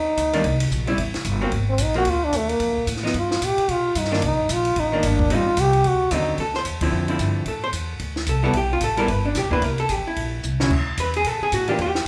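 A growling trombone leads this moody, smoky fragment of small-group swing and bop at 222 BPM, its raspy, breathy tone and scooped notes up front in a solo over G minor that ends at 6.3 seconds. A hollow-body archtop guitar, dark and clean, carries the picked accompaniment up front throughout, and the harmony turns to D minor at 6.4 seconds, while a woody pizzicato upright bass on steel strings holds the low end. A dry, compact cocktail drum kit, with a high-tuned snare, punchy kick and dark cymbals, drops a fill at 10.4 seconds, and the band plays live together in a large studio with moderate reverb.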